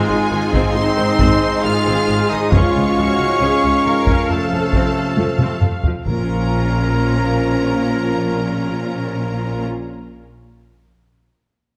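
Opening with strings and brass in Bb minor, this cinematic, epic film-score excerpt moves at a straight 68 BPM in 4/4 with a dramatic, relentless mood. Up close, a lush, intense violin section carries the melody with vibrato, while a more distant second violin line, a viola section and a smooth, rich cello section sit in the background beneath it. A focused double bass section anchors the bass, mellow French horns and a bright, tight trombone section hold sustained chords, and a distant, roomy solo trumpet adds stabs. A taiko ensemble struck with hard sticks enters at 0.5 seconds and drives the piece until 7.8 seconds, with a drum fill leading into the Bb minor arrival at 6.1 seconds, where very quiet, articulate timpani on calf heads join with hard mallets. The harmony moves from Ab through Db and F before settling on Bb minor, and a wet scoring-stage reverb gives the whole ensemble a large, cinematic space.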